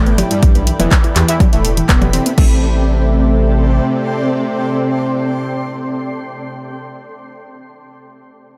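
Melodic techno at 123 BPM in A minor, this dark, dramatic passage is cut from a longer piece and opens straight into a drop, moving from E minor to A minor at 2.4 seconds. A dry, punchy, overdriven electronic kick sits up front alongside a layered techno kit of crash cymbal, handclaps, hi-hat and percussion blips that sounds re-recorded in a large room, both dropping out at 2.5 seconds. Beneath them, a round, deep analog bass with a triangle and sine character holds the low end until 3.8 seconds, pumping with the sidechain. The thick, bold unison lead carries the melody with detuned sawtooth weight, a sub octave, vibrato and tape echo, while a smooth, mellow supersaw traces a second line in the background through delay. A moody, wave-folded analog pad with chorus and a cloudy, evolving granular pad with built-in reverb sustain overhead, joined by a warbling, lo-fi pluck playing arpeggios until 2.6 seconds and very quiet brassy, nasal stabs.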